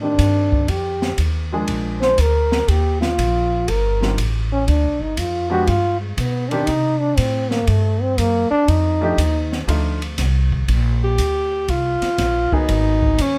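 Relaxed and warm, this short cut from a longer small-group swing and bop piece moves at 120 BPM in Bb major with a swung 4/4 feel. A breathy, mellow trombone carries the solo from the start, full of vibrato and scooped notes, sitting up front until 9.7 seconds while a present baby grand piano accompanies beneath it. A pizzicato upright bass with steel strings sounds woody and prominent, and an acoustic drum kit in a studio room keeps time on hi-hat, ride, snare and kick, the snare tuned high and the kick boomy. At 11.0 seconds an alto saxophone takes over the solo with a soft subtone, light vibrato and a smooth top. The harmony moves through rich ninth and extended chords, and the dry sound keeps the players intimate.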